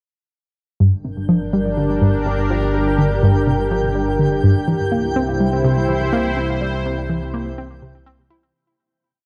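At 0.8 seconds a full-bodied, evolving pad, an analog pluck and a fat, thick bass enter together, opening this short, complete piece of hypnotic, expansive sequencer-driven space music in G dorian at 124 BPM in a straight 4/4. The pluck has a round, detuned sawtooth and square character, a noise layer and ring modulation, playing a 5-step loop that drifts against the bar while a filter sweeps across it, colored by chorus, delay and cassette tape. The sweeping resonant pad sits up front, holding bright, slowly shifting chords with chorus, moving from G minor to C at 4.7 seconds, while the bass sustains low roots underneath at a softer level. From 1.6 seconds a faint twinkling granular texture adds a sparkling, held high note with an octave-up shimmer and its own reverb. The whole piece sits in a vast, echoing cathedral-like space with a dark, tape-softened top end, and it fades out from 6.0 seconds until it ends at about 8.5 seconds.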